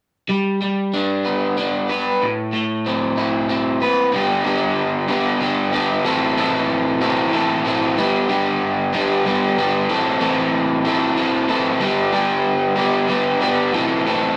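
Rock in 6/8, this short excerpt cut from a longer piece carries a bittersweet, moody feel. A single crunchy, overdriven electric guitar carries everything from 0.3 seconds to 14.4 seconds, picked and double-tracked so it sits thick and up front in the mix. The harmony rocks back and forth between G and A minor, with the first turn to A minor colored as an add9 chord before the second section begins at 4.1 seconds. The guitar ranges from G2 up to B4. A wet studio reverb gives the part a sense of space around its warm, driven tone.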